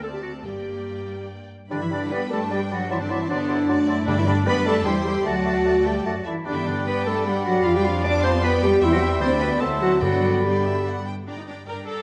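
Heard through a moderate scoring-stage reverb, this lively, spirited excerpt from a quick classical-period symphonic movement in G major and 3/4 (139-156 BPM, with rubato) sets a rich, smooth violin section on the melody over a second violin line, clear background violas and even cellos, with close double basses entering at 0.5 s. A bright clarinet adds a second line from the start, and at 1.7 s an airy flute, oboe and bassoon join mellow French horn chords, with background timpani strokes at 4.1 s and 10.0 s.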